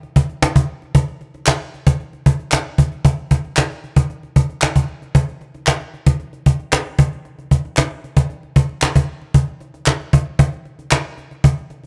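Upbeat and urban, this pop excerpt moves at 114 BPM in a straight 4/4, built on a woody cajon up front whose faint snares give it a light buzz from the first second. At 1.5 seconds a crisp, human group handclap joins in the background, compressed and saturated. The piece shifts into a new section at 9.3 seconds, and the handclap drops out at 11.0 seconds. The sound is dry and close, with the intimate feel of a small 1970s-style studio room.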